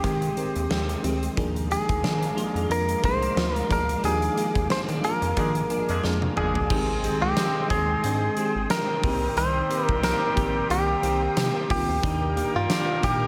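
Nostalgic and romantic, this 1980s-style pop excerpt at 90 BPM with a light sixteenth-note swing sets a bright, twangy clean electric guitar melody with warbly pitch drift and digital delay up front over a dark FM electric piano with tremolo, a silky string machine with ensemble chorus, a chorused twelve-string electric guitar riff with delay, a rubbery square-wave bass and a huge arena drum kit drenched in gated reverb with a fat snare and punchy kick, while a clear horn section adds delayed stabs from 5.4 seconds, a band accent and drum fill lead into the second section at 6.7 seconds, and the chords move from Abmaj7/Eb and Bb7 to Abmaj7, Cm7 and Ebmaj7.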